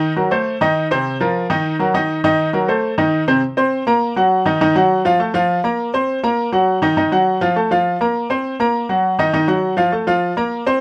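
A straight, driving 4/4 pulse at 203 BPM sets this short Latin excerpt moving, and it feels danceable from the first beat. A lone baby grand piano carries the whole passage from 0.0 to 10.8 seconds, ranging from C3 to C6, tuned to A4 = 444 Hz. Its tone is bright and brilliant yet worn and intimate, with audible action noise, and it sits present and up front. The opening moves through Cm6, Bbsus2, Ebm and Gb6 before returning to Cm6. At 3.4 seconds a new section begins, cycling repeatedly through Bbsus2, Ebm, Ebmadd9 and F. A moderate small-room reverb surrounds the piano in a rough home-demo mix.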